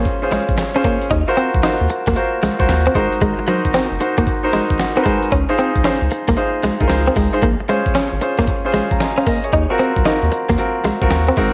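Bouncy and punchy, this new jack swing excerpt in Eb dorian rides a swung 114 BPM groove as a clear, polished baby grand piano sets out jazzy minor-seventh and ninth chords and adds fills at 4.3 and 8.7 seconds, a clean, direct-recorded electric guitar plays a compressed, picked riff through analog chorus, a round, deep analog bass holds down the low end with a dark, sustained tone, and a dusty, gritty sampler-style kit of thumpy kick, snare, hi-hat and handclaps sits up front, while cassette tape colours the piano, guitar and drums in a moderate digital room reverb with the feel of a home recording.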